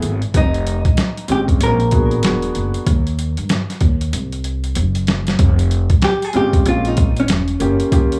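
A gritty, overdriven boom bap drum kit sits up front with a thumpy kick and medium-tuned snare, anchoring this nocturnal, mellow jazz-hop cut from a longer piece at 95 BPM in F minor with a swung 16th feel. A woody, pizzicato upright bass on gut strings carries the bass line, and a natural-sounding concert grand piano with deep bass voices chords like Fm9 and Bbm9, while a dark, clean hollow-body jazz guitar with tape echo enters at 0.4 seconds to carry the melody. After a break with a drum fill, the guitar takes a solo from 5.4 seconds, all set in a small room ambience.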